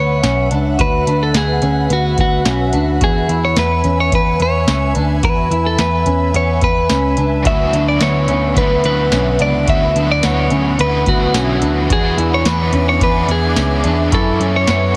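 A clean, up-front electric guitar melody with digital delay opens this haunting, melancholic dream pop cut at 108 BPM, over an ethereal, airy detuned pad, a slightly broken-up chorused guitar arpeggio, a round foam-muted bass and a booming analog drum machine with deep kick, tonal snare, metallic hats and tambourine, while a bright, overdriven stack guitar with tremolo joins at 7.4 s, all moving through D69 and E7 chords before landing on F#m7, under light reverb and a heavily compressed radio sound.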